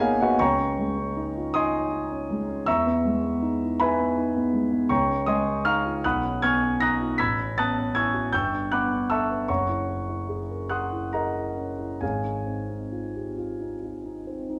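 A slow, rubato lilt in 6/8 carries this impressionist solo piano piece, with the dotted-quarter pulse moving at roughly 44 to 55 beats per minute. The mood is luminous and serene, and a single grand piano, warm and up front with long sustain, spans from Gb1 up to B6 across this 14.6-second fragment of a longer work. Its harmony drifts through colorful added-ninth and seventh chords: Dbadd9 at 0.4 seconds and Emaj7 at 2.7 seconds, then back to Dbadd9 before sliding through Badd9, Aadd9 and Gadd9. A Gb9 chord arrives at 9.5 seconds and the passage settles on Ab6 near its close. The piano sits in a recital hall with a wet reverb of about 1.3 seconds, lending the sustained tones a soft, glowing halo.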